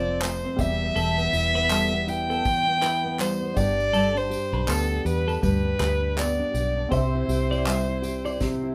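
Carefree and heartfelt, this short acoustic pop excerpt at 80 BPM with a gentle sixteenth-note swing sets an up-front, dark, smooth bowed violin melody over thumb-plucked classical nylon-string guitar, a very quiet woody upright piano with audible action noise, bright twangy twelve-string electric guitar arpeggios, a round, foam-muted vintage electric bass, an unplugged studio drum kit with bundle sticks, punchy kick, snare, handclaps and tambourine, and a jingly tambourine in the background, all in light reverb as the chords move through F, Em, G and C before a drum fill at 8.4 seconds.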